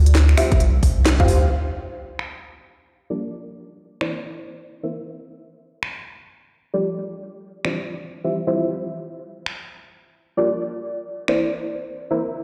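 A saturated sub bass opens this moody, skippy two-step garage excerpt in G dorian at 132 BPM, thick and up front with sidechain pumping, before dropping out at 1.5 seconds. The garage drum kit brings tape-warm finger snaps, crisp low-passed hi-hats and a cracking snare with a 63% swing on the sixteenths, while a tight electronic kick sits up front only briefly early on. A deep, mellow chord stab carries the harmony through Dm11, Gm7, C9 and F69. It is a soft, dark pluck blending triangle, sawtooth, sine and square waves with a sub octave, coloured by chorus, phaser and dub echo. From 1.5 seconds a filter sweep runs across the stab for the rest of the piece, with a band accent landing just before. A moderate, lush hall reverb and the sound of a big system in a bare room give the drums a roomy, re-recorded character.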